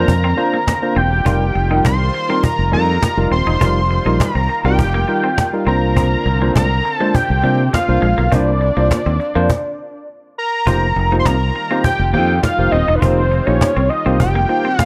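A fat, detuned analog lead with chorus and phaser sings the melody up front over barky tine electric piano, a very quiet, lush, warbling unison pad, a clean, twangy picked guitar riff in the background, growly fingered bass and a woody cajon played with soft hands, making a slick, late-night early-eighties boogie funk excerpt cut from a longer piece that moves between C9sus4 and F9sus4, halts for a stop at 9.5 seconds and resumes at 10.7 seconds in light digital reverb.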